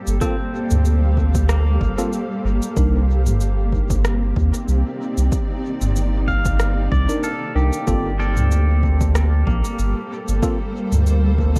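Ambient dub in a spacious, meditative mood, cut from a longer piece and resting on a single Gm11 chord: a cloudy, slowly evolving granular pad holds sustained chords in its own reverb, while a twangy, fingerpicked pedal steel guitar plays slide arpeggios with volume swells through dub echo. Underneath, a deep, round sub bass sits up front, joined by a punchy, overdriven electronic kick and a tape-toned drum kit of cabasa, rim click and toms sent into dub echo, while a worn, slightly out-of-tune tine electric piano adds background stabs that drop out around 3.0 seconds and return at 7.1 seconds. From 7.9 seconds a very quiet bubbling texture of random filter steps surfaces inside the dark, dry mix.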